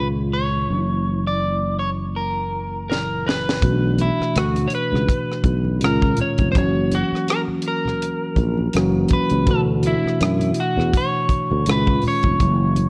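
Introspective and soulful, this neo-soul R&B excerpt in B minor moves at 82 BPM with a swung sixteenth feel, as a slightly broken-up, picked electric guitar carries the melody up front over a mellow tine electric piano and a growly, punchy fretless bass, before a drum fill at 2.9 seconds brings in a dry, tight funk kit with a high-tuned snare, and very quiet, thick-skinned congas join at 3.6 seconds, all wrapped in light reverb and the warble of worn cassette tape.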